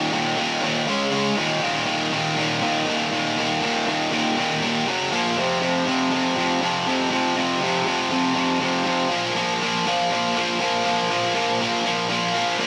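Rock at 120 BPM in a straight 4/4, this restless, anthemic clip features a lone distorted electric guitar that plays alone for its full 12.7 seconds. The picked, double-tracked part is bright and overdriven, sitting up front over light digital ambience as it moves through Eb5, Db5, Gb5, Bb5 and F5 chords, and it feels cut from a longer piece.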